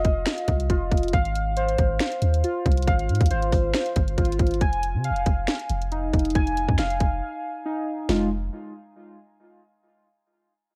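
Melancholic and brooding, this short trap excerpt settles into a half-time hip hop groove. Lo-fi synth keys built from triangle and sawtooth tones play warbling, nostalgic arpeggios, their fast-attack, decaying notes thickened by chorus and a digital delay. Beneath them, a long, sustained 808-style bass with a deep sine tone and mellow decay sits up front. The electronic, produced trap kit combines a hard-clipped kick, a sharp snare, warm hi-hats and finger snaps, and a break arrives at 7.2 seconds before the bass rings out last, until 8.5 seconds. The recording as a whole carries the worn character of old cassette tape, with a wavering pitch drift and little reverb, keeping the sound close and intimate.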